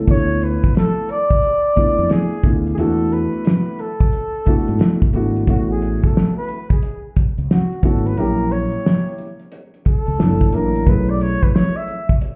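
This short jazz-hop cut, taken from a longer piece, opens with a dark, boxy grand piano and a round, punchy fretless electric bass sounding together, joined almost at once by a cloth-damped, thuddy drum kit and a breathy flugelhorn. Set at 89 BPM in 4/4 with a swung sixteenth-note feel in A major, the mood is warm and smooth. The drums sit up front, with a fat snare, a tight kick and hi-hat under a rolled-off top, while the piano voices shadowy extended chords such as Dm6, E9sus4 and A69 beneath the tune. From 5.5 seconds the flugelhorn takes a jazz-style solo, its soft attack, light vibrato and whispered, distant tone floating behind the rhythm section as the harmony moves through altered F#7 chords toward B13sus4. The whole mix carries small-room ambience and club reverb, and it sounds muffled, as if heard through a wall, lending the piece an intimate haze.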